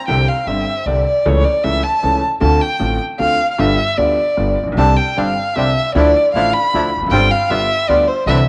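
A warm, bowed violin with vibrato and portamento opens this sultry, dramatic tango fragment in C major, singing up front over a bright upright piano with long sustain and a dark, woody pizzicato upright bass at 154 BPM in a rubato 3/4, before a reedy bandoneon adds stabs from 4.8 seconds, all under a moderate spring reverb in a home recording on cassette, ending on a band accent at 8.3 seconds.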